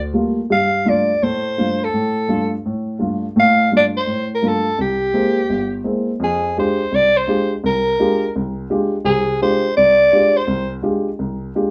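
A growling soprano saxophone and a baby grand piano begin together in this swinging jazz excerpt, set at a brisk 168 BPM in 4/4 with a lilting swing feel and a cool, spiritual mood. The saxophone carries the melody up front, its raspy, gritty tone colored by vibrato and scooped notes for a vintage, soloistic character. Underneath, the piano provides intimate accompaniment, with the sound of its action audible, moving from Gm9 through Dm/G to C7b13. At 6.2 s the music settles into F dorian on an Fm69 chord as a second section begins. The saxophone drops out at 10.7 s, leaving the piano alone until 11.7 s. A wet small-room reverb frames the duo, placing the listener a little further back in the space.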